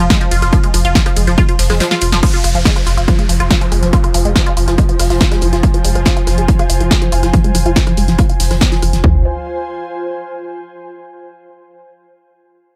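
A heavy, overdriven techno kick and toms sit up front in this intense, industrial peak-time techno cut in F minor at 141 BPM, driven further by a dry, punchy analog drum machine with crash, ride, rim click, hats and an overdriven snare, and a very quiet acoustic kit adding small-room hi-hat and snare. A deep, thick saturated sub bass holds F1 under a juicy, squelchy resonant pluck riff colored by phaser, overdrive and tape echo, while a swarming, warbling granular drone hovers in the background, all pumping against the kick. After a drop in which the kick falls out for a drum fill at 1.8 s, a filter sweep runs over a synth arpeggio from 2.2 s as a distant downlifter slides past, and an ethereal, airy chorused pad with built-in reverb and a long release enters at 3.3 s and lingers to the end.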